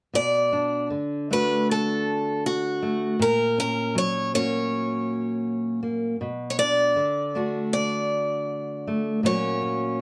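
A moderate studio reverb gives a modest sense of space to this short, melancholic and reflective acoustic folk-pop ballad, cut from a longer piece, with both guitars sitting up front in a straight, unhurried 4/4. A dark, full-bodied dreadnought steel-string guitar, fingerpicked, carries the accompaniment through a slow alternation of Bm7 and F#/A#. From 0.2 seconds, a bright, boxy parlour guitar, picked, plays the melody in a higher register above it.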